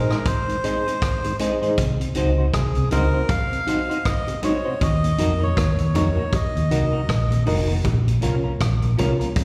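This short excerpt has the sound of a live gig heard through a venue's PA, fairly dry overall with a touch of recital-hall reverb. It is a serious, meditative roots reggae groove at 79 BPM in 4/4, with a 16th-note swing, moving through Ab, Cdim, Ebm and Bbm. A close-miked, breathy, nasal melodica carries the melody until 7.4 seconds, coloured by tape echo and slapback echo. Up front, a dark, round, foam-muted fingered bass anchors the low end, beside a vintage acoustic drum kit with a punchy kick, a rolled-off top, hi-hat and rim click. A reedy electric piano plays mellow stabs through its built-in speakers with a fast tremolo and slapback echo. Further back, a clean hollow-body electric guitar adds tape-echoed accompaniment, a smooth tonewheel organ with key click, chorus vibrato and a slow rotary speaker fills in the harmony, and tight, high-tuned bongos with slapback echo join at 0.3 seconds.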